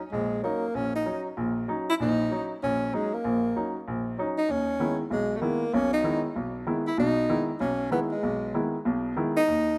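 Hypnotic and cool, this brief swinging jazz excerpt sets a breathy, close-miked tenor saxophone with soft attacks and scooped notes up front over a clear baby grand piano with short sustain, also up front, both bathed in a lush hall reverb within a rough home demo mix as the harmony moves from Ebm7 to E at 4.5 seconds.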